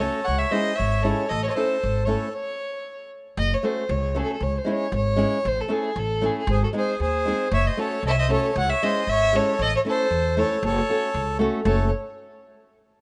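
A straight 2/4 pulse drives this fiery, restless Balkan folk excerpt: a dark, woody bowed fiddle with light vibrato carries the melody over fingerpicked flamenco guitar and thumpy, gut-strung pizzicato upright bass, and a reedy, smooth accordion adds a second line, falls silent at 2.3 seconds as the music briefly stops, and rejoins at 6.5 seconds, all heard in a small room with light reverb and a rough home-demo mix whose top end sounds muffled.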